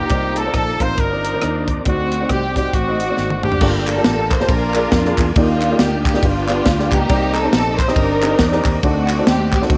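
A small-room ambience frames this fervent, soulful uptempo gospel cut in G minor, taken from a longer piece and moving at 138 BPM in 4/4 with a swung eighth-note feel. Up front, a lush bowed string section carries the melody with expressive vibrato and a smooth top, joined at the start by a brilliant solo trumpet with light vibrato and a slapback echo, while a very quiet, mellow French horn section holds chords beneath. The horns drop out at 3.6 seconds, after a drum fill, the trumpet follows at 3.8 seconds, and crisp group handclaps enter at 3.9 seconds for the second section. A tight funk drum kit with a high-tuned snare and tight kick drives throughout, anchored by a round, foam-muted fingered electric bass and a woody, slightly detuned, boxy upright piano. A softly sustained tonewheel organ with key click, chorus vibrato and rotary speaker glows underneath as the harmony moves through rich chords such as Cm9, D7b9 and Ebmaj9.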